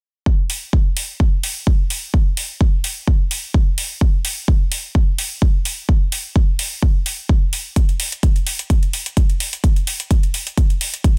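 A dense, heavily limited modern master in digital ambience carries this feel-good, joyful piano house excerpt at 128 BPM in 4/4 with a light 16th-note swing, where an up-front, punchy layered electronic kick enters at 0.3 seconds and metallic, layered electronic hi-hats join at 0.5 seconds, both running through to the end.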